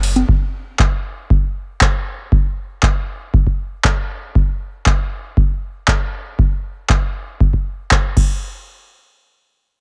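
A straight 4/4 acid house groove, hypnotic and trippy, opens on a booming analog drum machine of congas, crash cymbal, handclaps and metallic hi-hats, joined up front at 0.3 seconds by a deep, tape-warm electronic kick drum with small-room ambience, before both parts stop at 8.3 seconds in this cut from a longer piece.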